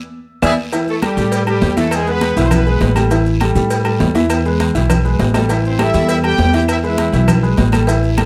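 A brisk 201 BPM salsa groove in straight 4/4 opens this fiery, passionate fragment of a longer piece, launched by a drum fill and a band accent before the full ensemble settles in. Up front, a growly, thumpy pizzicato upright bass with a dark tone anchors the low end, while a woody, up-front upright piano supplies the accompaniment over a harmony that moves between E7, A5, E and Am7. A loose pop-style horn section with light vibrato carries the clear melody in two bursts, from 0.4 to 3.0 seconds and again from 5.7 seconds after a second drum fill. Behind them sits a dense bed of percussion: ringing, high-tuned congas struck with hard hands, ringing metal-shell timbales and agogo bells, a tight high-tuned cowbell and distant claves in a large room, a raspy guiro, and grainy, mellow maracas. The sound is detailed and close-miked with light reverb, keeping the bass and piano forward and the percussion tucked into the background.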